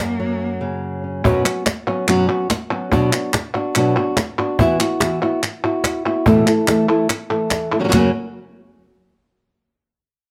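In a moderate studio ambience, the flamenco guitar sits up front in a plate reverb while the cajon and palmas sound close and dry. This short excerpt from a longer flamenco piece moves at 144 BPM in a straight 4/4, and its mood is mournful and intense. The acoustic guitar carries the melody on fresh strings, thumb-plucked across a range from F#2 to A4. Its harmony runs from F# through F#sus4, Bm and Esus2 to A5. At the opening, a single bowed cello sits quietly beneath it on an A#3, expressive with vibrato and portamento, and stops by 1.0 s. The snappy cajon, with its snares, supplies the percussion, and crisp palmas hand claps join at 1.2 s after a brief break, both playing on to 8.0 s.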